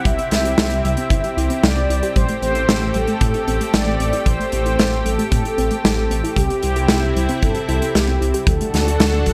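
From 0.1 s, a punchy, up-front kick and a big rock kit with a medium-tuned snare and hi-hat drive a straight 4/4 at 114 BPM alongside a dark, rumbling detuned saw bass, giving this driving, cinematic synthwave excerpt in A dorian its push as the chords move from C to Am7, back to C and on to D. A lush unison pad with chorus and sidechain pumping holds sustained chords beneath soft, round arpeggios from a background pluck treated with chorus and delay, while a mellow, brassy synth lead with vibrato, chorus and digital delay carries the melody between E4 and E5. The bright 1980s-style digital production sits in a light studio reverb.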